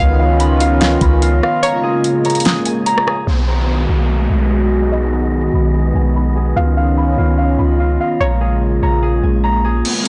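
A blown-out, overdriven mix with light reverb and a dull top end carries this dreamy, floating cloud-rap hip hop fragment in B lydian at 146 BPM, felt in half-time, where a dark, smooth analog pad pumps with sidechain under a deep, boomy 808 bass and a mellow, ringing concert harp plays delayed arpeggios. A bright, twangy string-like resonator pluck adds a chorused, filtered melody, while a breathy wind-like tuned noise texture sits far in the background. An electronic R&B drum kit with a knocking kick, fat snare and metallic hats runs from 0.4 to 3.2 seconds before a filter sweep and an electronic downlifter take over at 3.3 seconds, and the drums return briefly at 9.8 seconds as the kick drops out.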